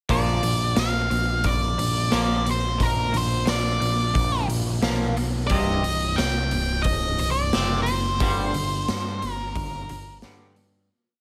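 A brooding, angsty burst of quiet-loud alternative rock opens at 89 BPM in a straight 4/4, with all four parts starting together: a dark octave-fuzz lead guitar states a motif-based melody up front, over a twangy electric guitar playing palm-muted eighth-note arpeggios through analog chorus and delay. An overdriven, round electric bass drives eighth notes beneath, while a raw garage drum kit brings a punchy kick, a medium-tuned snare and hi-hat, with a gritty, pumping room sound and a big rock groove. The short verse moves from Bb to Cm at 5.5 seconds and settles on Gsus4 at 8.2 seconds, where the piece begins to fade out in light small-room reverb.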